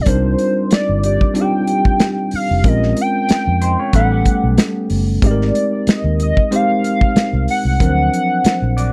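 Bittersweet and cinematic, this lush 1970s-style soul piece on a swung sixteenth feel sets a hollow, mellow square-wave lead with chorus and phaser over a worn, lightly overdriven tine electric piano, a round, foam-muted fingered bass and a dark, tight acoustic drum kit in a dry, close studio sound, while a metallic vibraphone rings in the background and a twangy clean electric guitar with lush chorus joins with a riff at 3.6 s.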